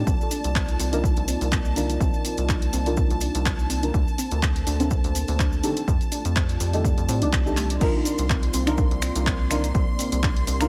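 A dark analog pad, mellow chord stabs with chorus, phaser and dub echo, and a rubbery, nasal square bass open this hypnotic, late-night deep house excerpt at 124 BPM in C dorian, with a lush violin section hovering high above and a warbling, lo-fi pluck tracing arpeggios through tape echo and 12-bit grit. A punchy, up-front electronic kick, grainy maracas and an analog drum machine supplying hi-hat, handclaps, finger snaps and crash carry a swung 4/4 groove under sidechain-pumped pad, bass and pluck, while the chords move from Cm11 through Bbmaj9/D to F13. A drum fill at 7.6 seconds leads into a drop at 7.8 seconds that returns to Cm11, all set in light reverb.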